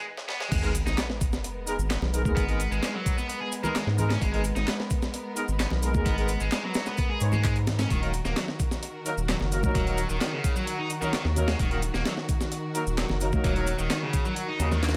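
Breakbeat at 130 BPM in G# minor, energetic and swaggering: a brief drum fill gives way at 0.5 seconds to a drop marked by a sub drop and reverse cymbal, with a gritty, compressed sampler-style kit (thumpy kick, high-tuned snare) up front beside a deep, saturated sine sub bass, a bright overdriven picked electric guitar riff with delay, smooth bowed strings pumping under sidechain, vintage brass stabs with light vibrato and delay, dry analog-tinged electronic shaker and handclaps in the background, and close, hard-hand congas entering at 2.0 seconds, while the chords move from G#madd9 to D#m at 7.9 seconds.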